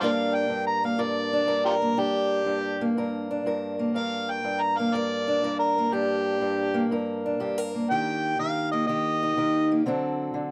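Soulful and brooding, this excerpt of swung acoustic country blues in G minor moves at 122 BPM: a gritty, overdriven, amplified harmonica sits up front with plate reverb, carrying a jazz-style solo melody with light vibrato, tongue slaps and scooped notes until 9.8 seconds, while a boxy parlour steel-string acoustic guitar, fingerpicked and also up front, accompanies through 10.5 seconds over Gm, Ebmaj7 and D7 in a moderate booth ambience.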